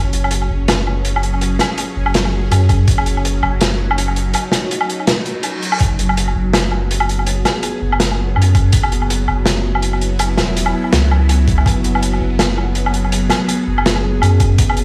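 A thick, saturated sub bass sits up front through this half-time drum and bass passage, its deep triangle tone striking with a fast attack and then holding. Above it, a string-like drone built from unison sawtooth voices and a noise layer swells in slowly with sustained chords, carrying vibrato, a phaser, its own reverb and a sidechain pumping that gives the spacious, tense mood its breath. A crunchy breakbeat kit of hi-hat, medium-tuned snare and woodblock plays throughout with a swung sixteenth feel, sounding dark, gritty and rolled-off at the top. A layered electronic kick with a knocking, tape-warm punch lands in short hits, first at 2.7 seconds, and a brief reverse cymbal rushes in at 5.3 seconds. The whole passage, cut from a longer piece, carries light small-room ambience and the reverb of a bare stone room heard through a big sound system.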